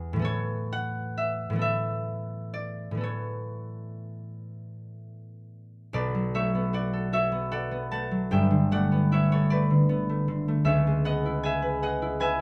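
Classical solo harp piece, peaceful and graceful, moving in a slow, rubato 6/8 at roughly 39-54 BPM counted in dotted quarters, with tuning set to A4 = 444 Hz. A single concert harp carries the whole passage, fingerpicked and ringing, its acoustic tone sitting up front and spanning a broad range from G1 up to C#6. The opening idea rests on an Aadd9 harmony before a new section arrives at 5.9 seconds, drifting through Bm7, G69 and C#m7. A moderate studio reverb gives the plucked strings a gentle halo of space. This is a brief cut from a longer piece, lasting about 12.4 seconds.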